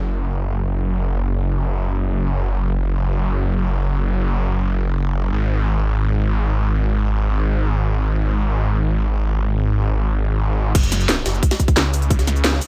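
A snarling, distorted saw bass growls up front from the very start of this dark, mechanical technical drum and bass excerpt, its detuned unison tone carved by a moving notch and held in free time for the first 10.7 seconds. At 10.7 seconds the drop lands, bringing in a tight electronic kick, a produced kit with a cracking snare, crisp hats, cabasa and crash, and a very quiet, gritty, pitched-up jungle sampler kit with a high-tuned snare. The short burst closes at 12.7 seconds in a digital ambience.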